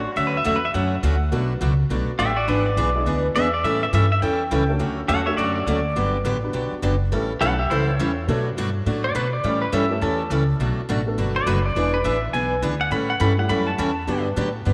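Bathed in a moderate plate reverb, this cheerful, playful western swing excerpt in D major moves at a brisk 207 BPM with a swung 4/4 feel, cycling through jazzy chords such as Dmaj7, Bm7, E7 and A7. An up-front, twangy electric pedal steel played with fingerpicks carries a clean, compressed solo full of slide and volume swells, while a thumpy, gut-strung upright bass plays pizzicato beneath it. A picked acoustic archtop guitar sits up front in the accompaniment, joined by a woody upright piano tucked into the background.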